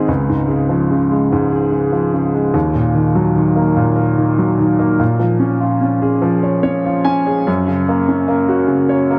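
A solo upright piano opens this short pop passage, its woody, natural tone sitting up front and clear in the mix. The tender, swaying mood comes from a slow 6/8 metre at 49 BPM, counted in dotted quarters with a straight feel, in Db major. The piano spans Db2 to Ab5 and moves through Db, Ebm, Bbm7 and Gb. At 6.2 seconds it plays a brief fill leading into the final chord. Dub echo on the piano and a moderate plate reverb with a 3.7-second decay give the mix an echo-heavy, spacious character. The passage is cut from a longer piece and runs 9.2 seconds.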